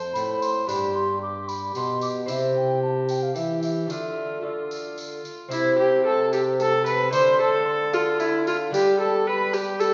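Solemn and rustic, this renaissance-style consort dance moves in a straight 3/4 at 112 BPM, a short cut from a longer piece whose repeated phrase passes through F, G, C, D minor and back to G. A mellow baroque flute carries the melody high above with pure, woody vibrato and a crisp attack, while an up-front viola plays a gut-string second line with light vibrato, and a fingerpicked lute with double strings adds delicate, bright accompaniment. A clear, distant trombone plays the bass and a jingly tambourine enters at 0.2 seconds, all heard from further back in a recital hall with a long, wet reverb and softened highs.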